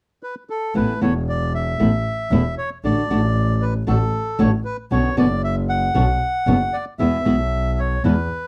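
Tango in A major at 115 BPM, played with a rubato feel, this short excerpt from a longer piece carries a nostalgic, elegant mood. The bandoneon takes the melody from 0.2 seconds, its reedy, dark, smooth tone sitting up front with a slapback echo, though it is mixed lower than the other parts. A fingerpicked flamenco guitar, acoustic and warm, supplies the accompaniment from 0.7 seconds, and a single bowed double bass joins at 0.8 seconds with a clear, biting, earthy sound and light vibrato. The harmony moves from Asus2 through D/A and Bmadd9 to E. The sound is that of a dry, close 1970s-style studio recording with little reverb, placing all three players near the listener.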